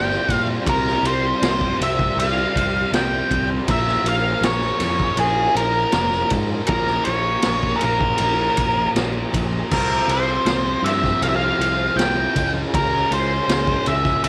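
A trippy, mysterious slice of psychedelic rock opens with an up-front, dark octave-fuzz lead guitar carrying the melody through picked, distorted lines touched by slapback echo, while a very quiet tonewheel organ holds full, clean chords with key click and a slow rotary spin underneath. Beside them a thick, bright, double-tracked fuzz guitar drives a phaser-tinged riff, and a round, punchy fingered electric bass anchors the low end at a steady 80 BPM in a straight 4/4. From 0.1 s a raw garage drum kit sits up front with a boomy kick, medium-tuned snare, crash and ride, its saturated, gritty tone rolled off at the top. Congas ring faintly in the background, barely audible in the small-room ambience. The harmony drifts from Csus4 through Bbm7 and Fm/C to Db6 over this 14.3-second cut from a longer piece.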